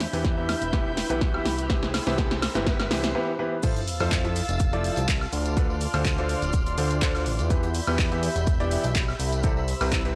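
Piano house with a euphoric, joyful mood and a lightly swung groove, this fragment opens on a build-up where a clear, intimate grand piano riff with audible action noise rides over a fat, nasal analog bass, a warbling lo-fi pad with chorus and phaser, and muted, veiled violins holding sustained chords, the piano, bass, pad and strings all pumping against the sidechain. An up-front, tape-warm electronic kick drives underneath as a punchy, overdriven analog drum machine plays a fill with crash, handclaps, hi-hat, snare and woodblock, while a very quiet riser and sub drop push toward a short break. At 3.6 seconds the drop lands, with a very quiet gated 80s kit from a bright stone room and a band-limited tambourine joining in the background under Fmaj7 and Dm7 harmony that moves back through Em and Cmaj7, all given light studio ambience and cassette-tape saturation.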